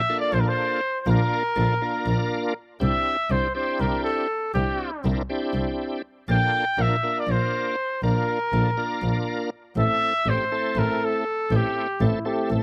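Driving in a straight 7/8 pulse, this brooding progressive instrumental is cut from a longer piece and opens with a clear, classical-style trumpet carrying the melody over a bright, shouting tonewheel organ, lightly overdriven with chorus vibrato and a slow rotary speaker. Beneath them, a boxy bowed double bass sings with vibrato and expressive portamento, all three parts up front in a dry outdoor sound with little reverb as the harmony shifts between Gm7/Bb, Cadd9 and Am. At 12.0 s a mellow, smooth-topped flugelhorn slips in with a brief second line just before the cut.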